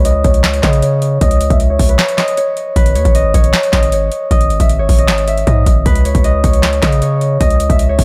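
Menacing and hard-hitting, this trap excerpt at 155 BPM in a half-time feel sets a bright, thumb-plucked Celtic harp melody up front, its ringing notes passed through a low-pass filter that sweeps until 2.8 seconds and trailed by digital delay, over a punchy sine 808 bass with a noise layer and a booming analog drum machine entering at 0.1 seconds with a deep kick, crisp snare, metallic hi-hats and handclaps, all moving from C#m9 through G#5 to C#7sus2 with a break from 2.0 to 2.8 seconds, in digital ambience.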